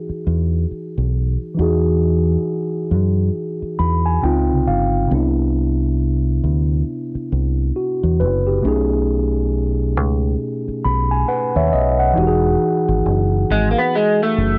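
Swung sixteenths give this slow 4/4 neo-soul and R&B groove a sensual, smooth lean, with a mellow, clean tine electric piano carrying lush chords such as Emaj9, C#maj9 and B13 through a low-pass filter sweep and a few fills. Beneath it, a dark, round, punchy fingered electric bass sits up front with a dub depth. At 13.5 seconds, a slightly broken-up, picked guitar through a small old amp adds a brief melody coloured by analog chorus and cassette grit, all within a light reverb and a lo-fi home-tape sound.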